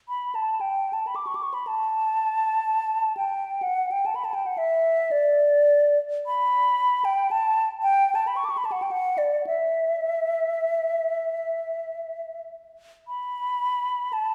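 The rhythm moves freely in 6/8, stretched and pulled by rubato so the pulse breathes rather than marches. This is a short classical fragment, cut from a longer piece, for unaccompanied concert flute, and its mood is mournful and meditative. The silver flute plays alone from 0.1 to 14.3 seconds, singing between D5 and D6 with a pure, hollow, mellow tone and a metallic sheen. Its notes are tongued and coloured with vibrato, and the instrument sits up front as if miked closely. Around it, a recital hall adds a lingering, wet reverb heard from further back in the room, so each phrase trails into the space.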